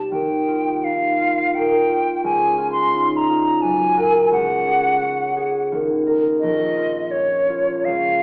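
Wistful and mysterious, this short impressionist excerpt for flute and harp drifts in a rubato 3/4 at around 86 BPM, with thumb-plucked, ringing concert harp chords moving from Ebadd9 through Db69 and Gbadd9 to a closing Bbm beneath an airy, expressive silver flute melody that is tongued with vibrato and rolled-off highs, both up front yet heard from further back in a wet recital hall with an AM radio tone.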